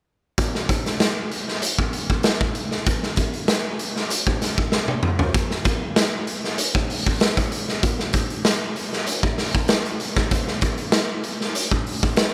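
Driving and sly, this short funk cut in a straight 4/4 feel features a raw garage drum kit of hi-hat, punchy kick, medium-tuned snare and toms, sounding saturated and gritty up front in a bright, pumping stone room with a rolled-off top and light reverb, and a drum fill at 4.7 s leads into a new section at 5.3 s.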